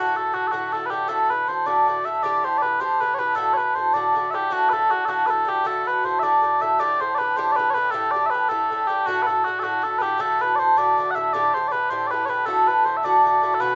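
Celtic folk in a straight 6/8, this short cut from a longer piece has a cheerful, rollicking mood. Small bagpipes carry the melody from start to finish, their mellow, sweet tone sustained in one continuous line and placed up front. An Irish bouzouki accompanies throughout, picked on double strings with an acoustic, metallic ring that sits just as close. Its harmony moves between D and Gsus2 across two statements of the same section, the second beginning at 4.5 seconds. A wet studio reverb gives both instruments a short, roomy glow.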